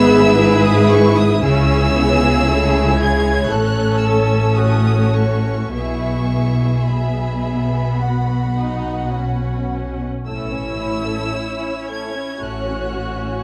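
A dark, woody violin section sings the high melody with vibrato above a lush, smooth second violin line, a rich, distant viola accompaniment and an expressive bass of gliding cellos and soft-attacked, up-front double basses in this slow, lyrical romantic movement for string orchestra, a 13.4-second excerpt with rubato phrasing and light reverb.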